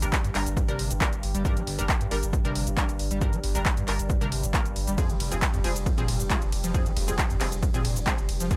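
A punchy, layered electronic kick drives this hypnotic peak-time techno excerpt at 136 BPM in straight 4/4, landing at 0.1 s and sitting at the front of the mix. Around it, a tape-toned analog drum machine supplies handclaps, hi-hat, ride cymbal and shaker, re-recorded in a small room, with sidechain pumping on its hats, percussion and cymbals. Underneath, a thick, saturated sine sub bass holds the low end with overdrive and a low-pass filter, while a squelchy, gritty square-wave acid bass riff with resonant filter sweeps and ensemble chorus sits further back. Muted, detuned sawtooth dub chord stabs with a filter pluck carry lush chorus and dub echo, and a moody, evolving ambient pad drones beneath with chorus and built-in reverb. Set in G phrygian, the harmony moves from Gm to Fm at 5.0 s, and the whole track has a dry, driving sound with little reverb and sidechain pumping on the bass, stabs and pad.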